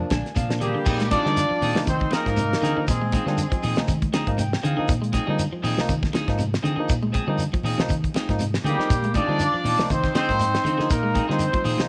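Heard in a small room with light reverb, this joyful, funky afrobeat passage at 120 BPM in Bb mixolydian rides on a dry, damped 70s drum kit with a fat snare, a round fingered electric bass, high-tuned congas and a grainy shekere, while a barky, lightly overdriven tine electric piano supplies accompaniment and fills, a twangy guitar at the edge of break-up plays arpeggios, a clean electric guitar adds stabs, and a mellow, up-front horn section carries the melody from 0.6 to 4.0 seconds and again from 8.6 seconds, shadowed by a breathy alto saxophone second line.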